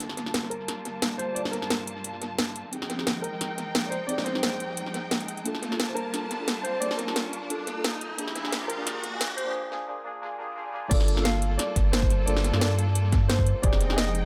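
Rolling and dreamy, this liquid drum and bass excerpt moves at 176 BPM with a light swing, alternating between Gm9 and Fm9. A soft, detuned chord stab with chorus and analog delay sweeps through a filter across the build-up, over lush bowed strings that pump against the beat. A round sine sub bass, a dark, vintage grand piano melody trailing delay, and an up-front, tape-echoed kit with a cracking snare and metallic hats complete the arrangement. A background riser and swell arrive at 2.1 seconds, and after a brief break a punchy layered electronic kick lands with the drop at 10.9 seconds, all inside an echo-heavy mix with moderate spring reverb.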